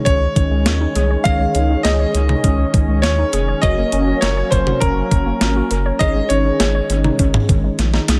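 Opening on a chorused electric piano with bell-like tine tones, a smooth detuned analog pad shimmering with tremolo, and gentle chorused plucked arpeggios, this nostalgic, bright synth-pop excerpt at 101 BPM is quickly joined by a brilliant concert grand piano carrying the melody with audible action noise and long sustain. Underneath, a deep, nasal analog bass and an overdriven, up-front 12-bit drum machine with a thumpy kick and medium-tuned snare drive the groove through Dbsus2, Gb and Absus4 chords, the piano melody ending at 6.8 s before a drum fill arrives at 7.8 s. Dub echo trails the electric piano, pluck, piano and drums, all set in a light digital ambience.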